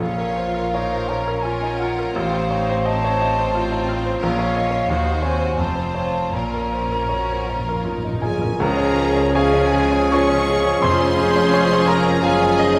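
Classical romantic music for piano and orchestra, this tragic, passionate passage moves in a rubato 3/4 at roughly 75-90 BPM, beginning in Bb minor and turning to Db major at 8.6 s. A brilliant grand piano carries the melody up front across a broad range, joined by a bowed violin section on the melody and a second, lush violin section with a smooth top as a second line. A hollow, close-miked concert flute adds its own pure second line, while a focused viola section accompanies in the background and cello and intense double bass sections hold the bass. Timpani struck with hard mallets open the passage and return with a fill from 6.3 s, and a clear trumpet section enters with stabs at 8.2 s. At the shift to Db major, a warm clarinet and a roomy cor anglais add second lines, a mellow bassoon accompanies very quietly, and tight trombone and dark French horn sections sustain chords. A wet scoring-stage reverb surrounds the ensemble in this excerpt, cut from a longer piece.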